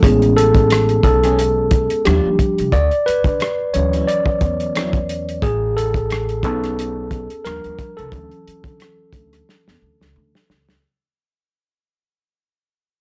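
Sensual and warm, this neo-soul R&B cut from a longer piece sways at 89 BPM in 4/4 with a gentle 16th-note swing, as a worn, slightly out-of-tune tine electric piano takes an up-front solo over Amaj9, D#maj9 and Dmaj9 chords, backed by a woody, thumpy pizzicato upright bass and a dry, muffled soul drum kit with a tight kick, a softly clipped snare, rim clicks and hi-hat, while a dark, slightly broken-up electric guitar with subtle chorus sits in the background from 1.2 to 5.0 seconds, a drum fill arrives at 9.5 seconds, and the whole blown-out, overdriven recording carries light reverb through a fade-out.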